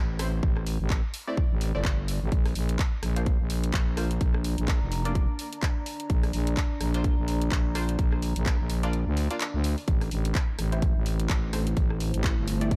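A growling, thick FM bass sits up front in this swaggering, bouncy bass house excerpt, its fast attack and sustained notes thickened by tube saturation and pulsed by sidechain pumping. Alongside it, a punchy, tape-colored electronic kick sits up front and anchors the groove, joined by a layered garage kit of handclaps, hi-hat and rim click that carries a swung sixteenth-note feel. A band-passed chord stab adds nasal, bright sawtooth hits that decay through phaser, lush chorus and delay, moving from an open start to a Bb chord. From 4.0 seconds a deep, moody ambient pad with a long release and built-in reverb settles into the background, while the kick drops out from 8.9 to 9.9 seconds before a shadowy analog pad brings sustained, detuned chords with chorus and phaser as the harmony turns to A minor. The mix is dry, with the pumping pads keeping the whole groove breathing in time.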